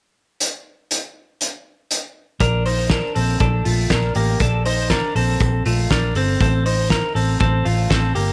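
Bright and nostalgic, this short excerpt of jangly indie pop moves at 120 BPM in a straight 4/4 feel in Bb major. A loose indie drum kit opens alone at 0.4 seconds with hi-hat, punchy kick and a fat snare, set up front in a pumping studio room. At 2.4 seconds a clean, twangy twelve-string electric guitar joins with compressed, picked arpeggios touched by tape echo, while a vintage muted fingered electric bass enters beneath it with a dark, round, foam-muted tone. The harmony rests on Bbmaj7 before shifting to F7 at 6.4 seconds, and all three parts play through to the cut. Light reverb and studio ambience give the close, up-front mix a sense of space.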